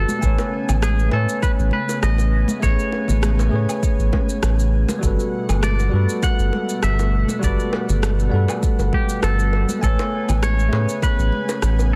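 Sunset chillout in a sunny, relaxed 4/4 at 100 BPM with a light sixteenth-note swing, this excerpt sets a clean, twangy, fingered electric guitar melody with digital delay over a bell-like tine electric piano carrying sampler grit and tape echo, a lush, detuned unison pad with chorus in the background, and a round, up-front analog bass with tube saturation, while a deep electronic kick, a tape-warm electronic shaker, woodblock and rim click with soft-clipped snare, and band-limited congas and bongos drive the groove through Amaj9 and Gmaj9 chords under light reverb and a dense, heavily limited modern master.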